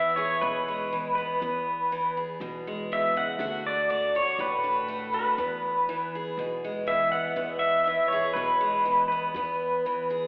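This down-home, nostalgic slice of honky-tonk and classic country opens at once on a pedal steel guitar solo. The clean, compressed electric steel sits up front, played with fingerpicks and slide, with volume swells. Beneath it, a bright, full-bodied dreadnought acoustic guitar is picked as accompaniment, and a pizzicato upright bass with gut strings adds a woody, thumpy low end from the background. At a straight 121 BPM in 4/4 and E mixolydian, the harmony moves from E to D at 3.4 seconds and returns to E at 5.4 seconds. The parts sit in a lush scoring-stage reverb that suggests a church or concert hall, yet the overall sound is narrowed to a telephone-like band, giving this short cut from a longer piece an old, faraway character.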